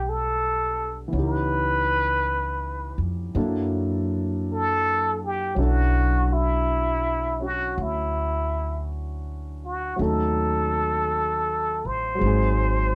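A breathy plunger-muted trumpet sings a wistful, melancholic jazz ballad melody with wah-wah inflections, vibrato and scooped notes over an intimate grand piano whose action noise and long sustain colour its swung chords from Em11 through F#7alt to Bm11, while a woody pizzicato upright bass sits up front in a dark production with light reverb across this brief excerpt.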